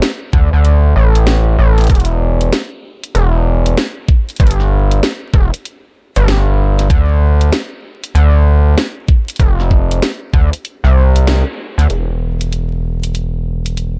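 Hi-hat and a cracking snare open this swaggering, gritty glitch hop excerpt at 96 BPM with a 63% 16th-note swing, soon joined by an up-front knocking electronic kick and a nasal, aggressive, distorted sawtooth synth bass with oscillator sync and a filter sweep, while a band accent at 11.3 seconds and the kick dropping out at 10.5 seconds lead into a new section at 11.9 seconds, all within a dark, dry production dusted with vinyl crackle.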